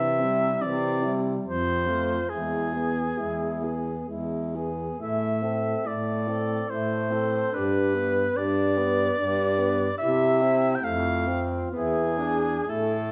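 A saxophone quartet opens together in a solemn, elegiac classical piece in 3/4, moving at a rubato 60-75 BPM. The close-miked soprano saxophone sings the melody up front with a clear tone, soft attack and vibrato, while the distant, roomy alto with vibrato carries a second line, the mellow tenor fills in accompaniment, and the punchy baritone, also vibrato-laden, anchors the bass. A wet recital-hall reverb surrounds the parts as the harmony passes from C through Am and G to a closing Fmaj7 and E7 in this fragment of a longer work.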